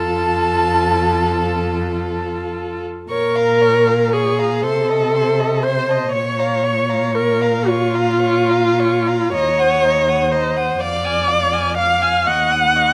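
Close, detailed microphones in a recital hall with moderate reverb give this short passage cut from a longer classical work an intimate, finely etched sound. It is a slow, romantic movement for string quartet in Bb minor and 6/8, moving at around 34-42 BPM in dotted quarters with a rubato feel, and its mood is melancholic and yearning. The first violin carries the melody high in its range with a light vibrato and a smooth, even tone, while the second violin adds a darker, woody second line. The viola sits up front with a soft attack, expressive portamento and a warm vibrato, and the cello supplies a bass line that sounds more distant, also sliding expressively between notes. After an opening on F, the harmony settles into Bb minor at 3.1 seconds, passes through diminished chords, and turns toward Eb minor, reaching an Eb minor seventh at 12.3 seconds as the passage ends.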